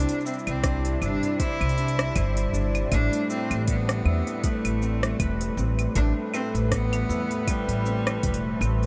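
A woody, thumpy pizzicato upright bass sits up front in this short folktronica passage, which is cut from a longer piece and carries a pastoral, playful mood with a light swing on the sixteenths. Above it, a single bowed cello carries the melody with a bright, biting, intense tone and vibrato. The cello sounds distant and carries delay, and it stops at 8.6 seconds. A fingerpicked Celtic harp rings out arpeggios, also touched with delay, while a smooth, detuned sawtooth pad with a soft attack and long release holds chords under chorus. The rhythm comes from a minimal electronic kit of cabasa, claves, clicky hats and rim click, joined at 0.6 seconds by a soft, overdriven electronic kick. The harmony moves from Cadd9 to Amadd9, and a huge ambient reverb soaks the whole mix in a dreamy haze.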